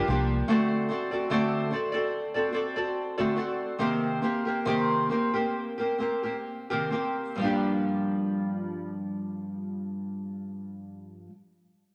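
Bathed in a wet echo-chamber reverb with a 2.2-second tail, this tender, reflective pop excerpt in G minor features a small, up-front, fingerpicked nylon-string guitar, double-tracked and sounding acoustic and warm. It plays accompaniment from G2 to D5 over a lightly swung 4/4 between 63 and 74 BPM, slowing from 0.5 to 7.4 seconds as it moves through D7 and Cm7 before settling on Gm7 for the closing passage of this fragment cut from a longer piece.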